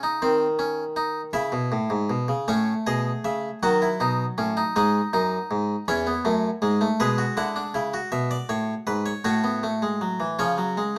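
A lone harpsichord sounds from the start, plucked and bright on a single set of strings in the Italian style, placed up front with an airy quality in a small room's moderate reverb. This stately yet lively fragment of a four-part baroque-style fugue moves in 6/8 at 53 BPM, counted in dotted quarters, and spans from E2 up to F#5. After the opening C minor and C-sharp minor harmonies, a new section begins at 2.5 seconds and passes through A, D-sharp diminished and F-sharp minor before arriving at C-sharp at 10.4 seconds.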